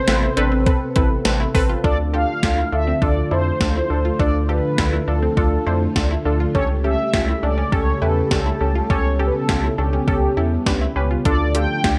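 Set in a light digital reverb, this cool, melancholic synth-pop piece moves at 102 BPM in 4/4, opening on Amadd9 before shifting to Dm at 1.8 s and passing through A7/C#. An up-front, tape-toned gated 80s digital drum machine with a thumpy kick and gated reverb snare sits over a deep, dark analog bass, while a string machine cello patch holds full-bodied chords with ensemble chorus and a warbly, lo-fi dusty pluck adds chorused accompaniment. Above them a brassy, ring-modulated synth brass carries the melody with vibrato, chorus and slapback echo, and a nasal analog pluck plays arpeggios in the background through phaser, chorus and slapback echo.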